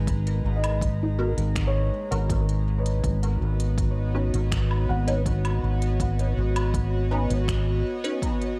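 A straight 81 BPM groove in 4/4 sets this meditative, spacious ambient dub fragment in motion, with a punchy, overdriven electronic kick sitting in the background and an organic electronic kit of finger snaps, crisp hi-hats and woodblock trailing dub echo through a large room. Up front, a dark, round fingered electric bass with tube saturation holds G#1 under an airy, breathy chorused pad sustaining a single G#m9 chord. From 0.6 s a soft, felt-muted upright piano adds intimate arpeggios with dub echo, and from 1.2 s nasal, filtered dub chord stabs arrive with phaser, ensemble chorus and echo, all under light reverb.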